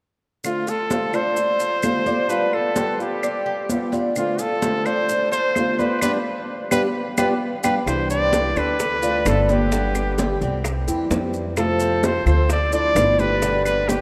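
A relaxed, danceable Cuban son and guajira groove moves in a straight 4/4, with ringing, high-tuned congas struck with hard hands, grainy maracas and very quiet, woody claves setting the pulse from 0.4 seconds. A dark, boxy fingerpicked acoustic guitar with old strings carries the accompaniment, while a tres picks metallic arpeggios on its double strings, some doubled at the octave. Up front, a clear trumpet sings the melody with vibrato and a smooth top, trailed by a slapback echo. After a band accent from 6.0 seconds, the arrangement fills out at 7.9 seconds as a thumpy pizzicato upright bass with gut strings arrives up front, joined by very quiet, round, low-tuned bongos played with soft hands. The hand drums carry a vintage, band-limited sound, and the whole band sits in a vast, echoing space with a long, wet cathedral reverb.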